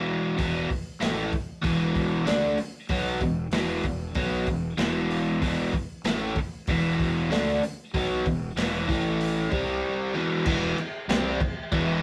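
A biting, overdriven electric guitar leads this raw, swaggering garage rock excerpt, its picked, double-tracked riff sitting up front in E minor at 95 BPM in a straight 4/4. From 0.4 seconds a crunchy breakbeat drum kit joins, acoustic and saturated with a tight kick, medium-tuned snare, hi-hat and dark cymbals including crash, its gritty sound having a rolled-off top. A fuzz-soaked fingered electric bass enters at the same moment, punchy and overdriven but tucked in the background beneath the riff. The guitar moves through power chords on E, A and C before landing back on E, and at 10.4 seconds the music shifts to a new section on an E minor chord. A moderate small-room reverb and a rough rehearsal-room sound give the whole cut a loose, live-in-the-room edge.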